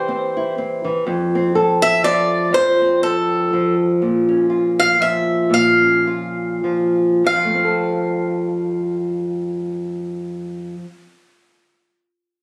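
Peaceful and pastoral, this short cut from a longer acoustic folk piece sways in a lilting 3/4 with a gentle swing on the eighth notes. A bright, boxy, picked acoustic guitar carries the melody up front, its swing phrasing marked by audible finger squeak, and it stops at 10.5 seconds. Beneath it, a warm, small-sounding fingerpicked nylon-string guitar supplies the accompaniment, also close and present, playing through to the end at 11.1 seconds. The harmony moves from C to F, darkens briefly on a B-flat minor chord at 4.0 seconds, and the pace slows before settling back on F at 7.3 seconds. The duo sits in a modest small-room reverb with a touch of compression, captured with the casual intimacy of a phone recording.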